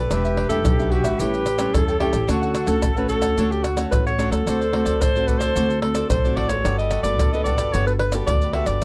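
A dry, close recording in a 1970s studio style, touched with light reverb, frames this lively, sunny passage of samba and choro in D major, moving at 110 BPM in a straight 4/4. Up front, a breathy alto saxophone carries the melody as a jazz-style solo, its subtone and light vibrato giving it a smooth top. In the background, a wooden flute adds an airy, tongued, slightly unsteady second line that stops at 8.6 seconds. A brilliant, small-sounding fingerpicked nylon-string guitar and a crisp, picked cavaquinho, also set back, fill out the accompaniment, while a woody pizzicato upright bass anchors the low end. The percussion, close and prominent from 0.1 seconds, combines maracas, pandeiro, tamborim and a tight surdo, all played with hard hands, as the harmony moves from Em7 through A7 to Dmaj7, then D7 and Gmaj9, in this short passage cut from a longer piece.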